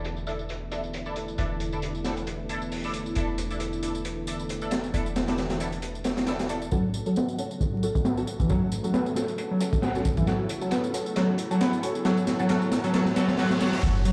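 A crunchy, lightly swung breakbeat with a punchy kick and high-tuned snare drives this raw, gritty breakbeat excerpt, joined by a tape-warm analog tambourine, a deep, boomy 808-style bass, a swirling phased pad that pumps against the beat, and nasal, band-passed chord stabs trailed by delay. At 6.7 seconds the bass drops out and a screaming, guitar-like overdriven synth lead takes up a riff as a build-up begins, with filter sweeps on the drums, lead and stabs, a drum fill from 10.3 seconds, a reverse cymbal and a very quiet riser and downlifter, and the bass briefly returns at 13.8 seconds. The whole mix sits in a lush hall reverb with vinyl crackle and a muffled, big-room playback sound.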